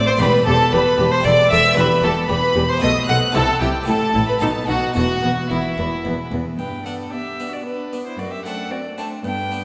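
A wet concert-hall reverb surrounds this short cut from a driving, stormy baroque-style concerto movement in 3/4 at 113 BPM, moving from E minor to G major at 6.6 s. An up-front solo violin with a reedy gut-string tone and light vibrato carries the melody alongside a chamber violin section with a smooth top, while a second violin section sits in the background on a second line and a dark, distant viola section fills in the harmony. Underneath, a close-miked, dry and round harpsichord plays accompaniment, a background cello section holds the bass line, and a double bass section doubles it until 6.4 s.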